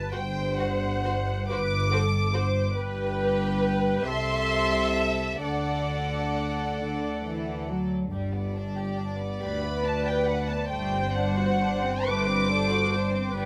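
Violins and violas open this serene, lyrical passage, cut from a longer piece: a slow, romantic movement for string orchestra that sways in six-eight with uneven, rubato beats. The first violin section carries the melody high and up front, bowed sul tasto with a soft attack and a pure, floating tone that keeps a smooth top. Almost at once, at 0.1 seconds, a second violin section adds a rich, more distant line, while cellos and double basses take the bass. The violas fill the middle with a warm, intimate accompaniment marked by light vibrato, and the double basses share those qualities, sounding close. Light reverb and detailed microphones keep the ensemble clear, and the melody ends at 13.3 seconds while the other strings continue to 13.5 seconds.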